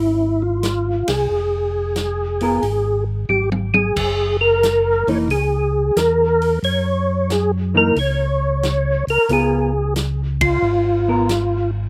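A dry recording made outdoors carries this soulful, bluesy soul jazz organ trio excerpt, where a percussive tonewheel organ sings the melody up front with a round, dark tone, third-harmonic percussion, chorus vibrato, slapback echo and a slowly turning rotary speaker. Beneath it, a second, mellow tonewheel organ plays the bass with audible key click and its own slow rotary, while a clean, fingered hollow-body electric guitar comps with a dark tone. A natural acoustic drum kit with a punchy kick and a medium-tuned snare swings in at 0.6 s, adds a fill at 3.3 s, and joins the band accents, the last of which lands at 10.3 s.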